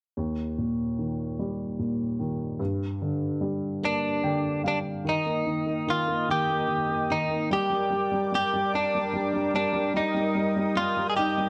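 Pop, heartfelt and swaying in 6/8 at 49 BPM in Eb major, opening on a woody, up-front upright piano that plays a fill at 3.8 s before a clean, picked, compressed electric guitar recorded direct takes the melody at 3.9 s, and a smooth, detuned sawtooth pad with chorus and a soft attack settles in beneath at 5.0 s, inside a moderate echo-chamber reverb.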